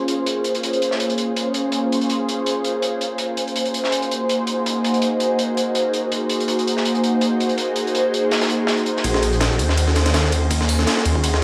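An ethereal, chorused pad with phaser shimmer opens this frenetic, atmospheric drum and bass and jungle excerpt, filter-swept over Bbm9 and Ab7 chords while a saturated, rolled-off acoustic break of hi-hat and snare plays underneath. At 9.0 seconds a build-up begins as a deep, rumbling detuned saw bass and an up-front, pitched-up sampler break with thumpy kick, high-tuned snare and ride cymbal arrive, all wrapped in dry, gritty hardware color with transformer saturation, vinyl crackle and a moderate digital room reverb.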